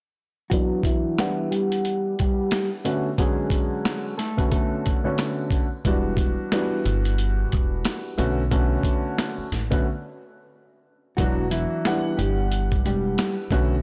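Reflective and moody, this boom-bap hip-hop cut, lifted from a longer piece, rides a swung 16th-note groove in 4/4 over a slow cycle of Em9 and Bm9 chords. A gritty, pitched-down sampler-style drum kit sits up front, its thumpy kick, medium-tuned snare and hi-hat compressed and tape-warm, with the feel of a re-recording in a small room. A dark, slightly detuned upright piano carries the accompaniment throughout with a smooth, vintage, woody tone softened by a low-pass filter and a cassette haze. A mellow, clean electric guitar, played with the fingers, offers a melody through a low-pass filter and delay, dropping out at 5.2 seconds and returning at 11.2 seconds for the closing section. A pizzicato upright bass with steel strings enters at 5.8 seconds, its dark, acoustic body thickened by tube saturation, while a filter sweep runs through the opening section and a short break sets up the turn. 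The whole mix is dry, blown-out and overdriven, giving the track a heavy, saturated lo-fi character.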